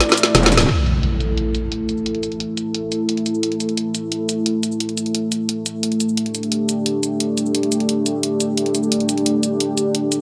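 Aggressive and mechanical, this excerpt of dark technical drum and bass at 175 BPM opens with a drum fill from an up-front electronic kit with a woody snare and low-pass filtered hats, cymbals and shaker, joined briefly by a very quiet, gritty breakbeat sampler kit with a high-tuned snare, while a moody, detuned sawtooth pad with a sub octave holds sustained chords throughout under chorus and vintage 12-bit sampler grit. A distorted, metallic FM wobble bass bursts in on a low E from 0.3 to 0.7 seconds, landing on a band accent before an electronic impact sounds from 0.7 seconds as the main section begins. Light digital reverb gives the mix a compact, produced ambience.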